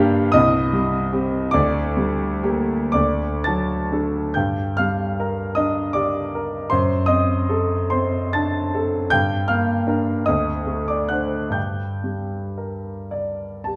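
A wet recital hall wraps this short fragment in a reverb that lingers for about 1.4 seconds, while the grand piano sits up front with a warm, smooth, vintage tone. It is a romantic classical nocturne for solo piano, yearning and melancholic, unfolding in 6/8 with free, rubato phrasing. The piano alone carries the whole passage from 0.0 to 13.8 seconds, ranging from C2 up to A6. Its harmony moves through Cm, Gm/D and D before settling on Gm, then passes through D7/F#, Gm and D7 to close back on Gm at 11.6 seconds. Cut from a longer piece, the clip presents a single section of unhurried, warm-hearted melancholy.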